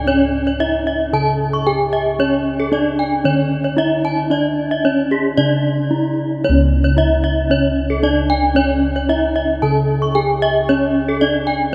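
Bronze metallophone melody and deep bossed gongs sound together from the very start of this brief excerpt of Balinese gamelan, joined a moment later by a second metallophone spinning out arpeggios higher up. The mood is brilliant and ceremonial, set in a steady, straight four-beat metre and tuned to a pelog scale. The melody metallophone, struck with a wooden mallet, has a dark, smooth ring, while the arpeggio instrument, played with a horn mallet, sits up front with a bright, mid-forward edge. Both metallophones use paired tuning, so their tones carry shimmering beats. Beneath them the gongs are round and beating, placed close in the mix and carrying the bass line. A short break falls between 5.6 and 6.4 seconds, and the whole ensemble is bathed in a cathedral reverb that makes it sound as if it were played in a vast, echoing space.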